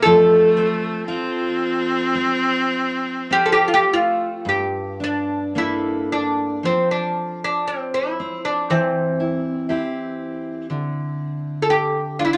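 A slow, rubato pulse in 4/4, hovering around 49-60 BPM, carries this short cut from a longer Celtic slow air, and its mood is longing and mournful. A fretless oud leads the melody up front, its plectrum-plucked double strings sounding bright and woody across the span from C4 to A4. A clear, focused viola played by a single bowed player adds a second line with vibrato beneath it, then falls away at 4.4 seconds. Underneath, a jumbo steel-string acoustic guitar fingerpicks a full-bodied accompaniment with audible finger squeak, moving from F through Gmadd9 to C/E before the harmony drops out at 10.7 seconds. A moderate studio reverb gives the three acoustic instruments a modest sense of room.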